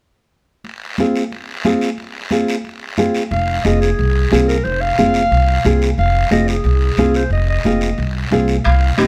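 Close, dry congas played with soft hands sit in the background beside a raspy guiro from 0.6 seconds, joined by a dark, thumb-plucked nylon-string guitar up front in this driving, passionate cumbia excerpt. At 3.3 seconds the harmony moves from Fm to Fm7 as a woody pizzicato upright bass and a breathy, jazz-style clarinet solo enter, the close-miked clarinet carrying light vibrato, soft attacks and scooped notes. Ringing metal-shell timbales add a vintage, band-limited touch at 8.7 seconds, with light reverb framing the sound.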